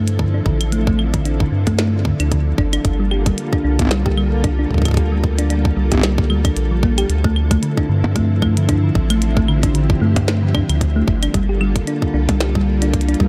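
A lightly swung sixteenth-note groove drives this glitchy, intricate IDM fragment: a tight, tape-tinged electronic kick sits up front, a kit of tiny snare, clicky hi-hats, claves and percussion blips echoes through small-room delay, a round, deep analog bass anchors Dm9 and Gm9 chords held by a silky, warbling vintage string machine with ensemble chorus and sidechain pumping, and a tine-like FM thumb-piano pluck spins chorused, delayed arpeggios throughout, the whole set inside a digital ambience.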